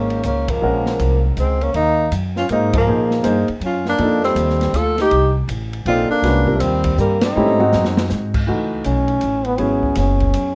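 Modal jazz in a swinging 3/4, intense and hypnotic: a mellow tenor saxophone carries the melody with light vibrato and scooped notes over a clear trombone second line, natural baby grand piano accompaniment, a woody pizzicato upright bass and a dark small-room drum kit with a boomy kick, while band accents and a drum fill at 7.4 seconds lead to a trombone solo from 8.5 seconds in this rough, moderately reverberant demo excerpt.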